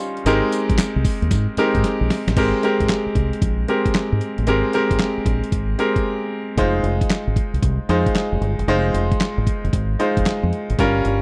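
A dry, close 1970s-style studio sound with a touch of digital ambience frames this bouncy, confident new jack swing excerpt in F minor, moving at 114 BPM with a swung sixteenth-note feel. A brilliant, polished concert grand piano sits up front from the start, while a gritty, compressed sampler-style soul kit of thumpy kick, snare, hi-hat, handclaps, tambourine and crash plays a fill at 1.8 seconds, and the music drops into a brief break at 6.0 seconds. A round, punchy fingered electric bass with a dark, amped tone enters at 0.3 seconds on an Abmaj9 chord before the harmony settles onto Fm7 at 6.6 seconds.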